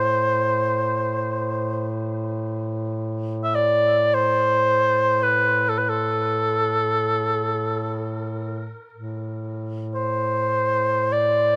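From the first moment, a cor anglais and a duduk sound together in this short cut from a longer Caucasian folk lament in A minor, tuned to A4 = 441 Hz. The duduk holds a mellow, smooth-topped drone on a low A in a folk style, sitting quietly beneath. Up front, the cor anglais sings the melody in a warm classical style with vibrato, ranging from A4 to E5, its line trailed by a tape echo. The music unfolds in free time with a mournful, longing mood, and the opening material returns at 8.9 seconds before the cut ends at 11.6 seconds. Close, detailed microphones and a light reverb keep both voices intimate and clear.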